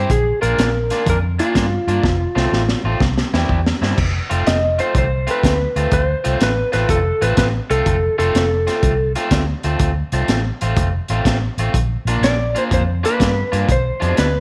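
An up-front electric slide guitar, dark and compressed with slapback echo and played with fingerpicks, carries the melody of this swaggering, gritty electric blues shuffle at 124 BPM in F major, falling silent at 9.1 seconds and returning at 12.2. Beneath it, a bright, twangy guitar through a small old amp plays a slightly broken-up riff, while a round, foam-muted vintage bass and a saturated breakbeat kit with a punchy kick, high-tuned snare and dark cymbals carry the swung 4/4 groove. A drum fill arrives at 2.0 seconds, and light reverb gives the performance a small-room feel.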